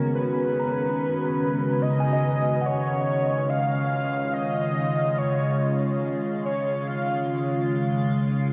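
Drenched in a huge, dark reverb, this peaceful ambient excerpt drifts at 72 BPM in 3/4 over Bmaj7, C#add9 and C# chords, with an evolving, morphing wavetable pad holding chorused, phased sustained chords up front, a velvety, detuned synth lead with vibrato singing the melody through diffuse delay until 7.7 s, and a mellow, clean tine electric piano tracing delayed arpeggios until 5.8 s.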